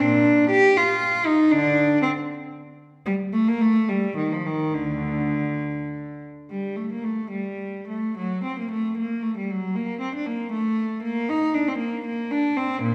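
Classical, baroque-style suite movement for unaccompanied cello in a solemn, grave mood, moving in a rubato 6/8 at 66-80 BPM as a single bowed player, up front, draws a rich, reedy gut-string tone in period style from D2 to G4 across this 12.9-second fragment, with the phrase heard once and then again from 6.5 seconds, all bathed in the wet reverb of a recital hall.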